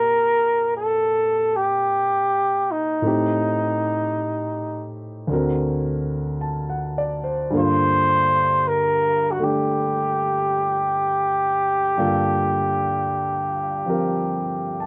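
Wistful and melancholic, this slow jazz ballad, cut from a longer piece, unfolds in a swung 4/4 over a single stretch of about 14.9 seconds. A dark-toned trumpet carries the solo melody from the first second, its punchy attack paired with a light vibrato and a distant, roomy quality that still sits up front. Beneath it, a grand piano supplies the accompaniment across a broad register, its tone warm and present with a long sustain that lets each chord ring. The harmony moves from a Bb6 through Am7b5 and D7b13 before settling on Gm9 at 7.5 seconds, giving the passage its aching color. The sound suggests a small, dry room, captured close in the manner of a 1970s studio session.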